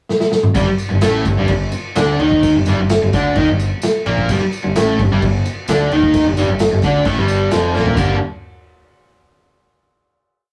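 A rough, gritty rehearsal-room sound frames this short, raw garage rock piece, where a vintage drum kit with punchy kick and rolled-off top kicks off with a fill at 0.1 seconds, then an overdriven, double-tracked stack guitar plays an up-front octave riff doubled by a dark, round fuzz bass driving in eighth notes, a jingly tambourine sits in the background, and another drum fill at 7.7 seconds leads to a final chord at 8.0 seconds.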